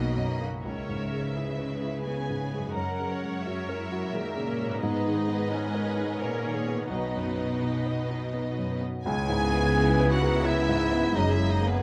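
A present, polished baby grand piano carries the accompaniment through this longing, bittersweet cinematic orchestral excerpt in a rubato 3/4, framed by lush bowed strings (a smooth second violin line, background violas and distant cellos on the bass) and a very quiet, ringing fingerpicked harp playing arpeggios, until at 9.0 s a focused violin melody and rich double basses return while a mellow, roomy solo clarinet and a tight French horn section holding sustained chords join, all set in a moderate scoring-stage reverb.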